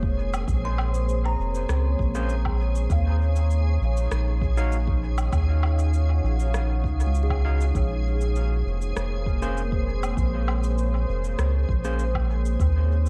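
Spacious and meditative, this ambient dub passage is cut from a longer piece and rests on a deep, moody pad of detuned sawtooth chords, thickened with chorus and reverb, moving between Bbm9 and Ebm9. A soft, round sub bass sits up front beneath it, while a tape-warm electronic kick stays in the background. Electronic shaker, woodblock and rim click enter at 0.3 seconds, sounding re-recorded in a large room and trailed by dub echo. A woody, hollow kalimba plays ringing arpeggios in the background until 9.0 seconds, and from 2.1 seconds an overdriven tine electric piano adds gritty, barky stabs through a combo amp, also sent into dub echo. A reversed, granular texture hangs dreamily on a single held Ab throughout, and vinyl crackle runs over an otherwise dry recording.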